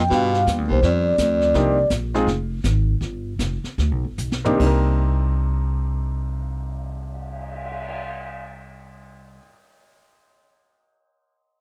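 Soft-mallet vibraphone with a ringing, airy shimmer carries the melody of this cool, smoky small-group swing and bop excerpt in C minor, with a scooped, vibrato-laden baritone saxophone beneath it until both stop at 1.9 seconds. The tempo sits between 142 and 167 BPM and slows through the opening, while a woody pizzicato upright bass plays throughout and an intimate baby grand piano, its action noise audible, comps over chords such as G7, Cm9 and Fm. A brushed drum kit with dark cymbals, a high-tuned snare and a boomy kick plays a fill at 4.2 seconds before the piano returns at 4.4, all captured in a dry, close 1970s-style studio sound.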